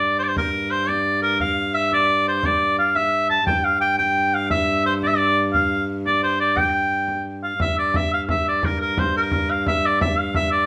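A rough home-demo mix places this short cut from a longer piece in a small, wet room with a brief half-second reverb. It is a driving, mysterious medieval dance in G dorian, moving at 116 beats per minute in a straight 6/8 feel. Up front, a bright shawm carries the folk-style melody between Bb4 and A5, its scooped notes trailed by a slapback echo. Beneath it, a single bowed, fretted viola da gamba holds a rich G2 drone with light vibrato, an airy bow sound and a boxy, ringing tone, while a close, warm frame drum played with soft hands adds percussion. After the opening section, the tune shifts into a new section at 7.6 seconds, and the drum drops out at 10.5 seconds, just before the cut ends.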